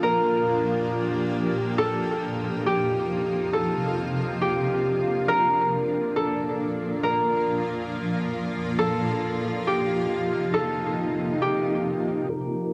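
Blissful and floating, this half-time hip hop excerpt at 137 BPM pairs an up-front concert harp melody, fingerpicked and ringing, softened through a low-pass filter, cassette tape and tape echo, with a cloudy, detuned granular pad holding blurred, evolving chords from Bb through F7 and Bbmaj7, all captured as a home cassette recording in a small room with light reverb.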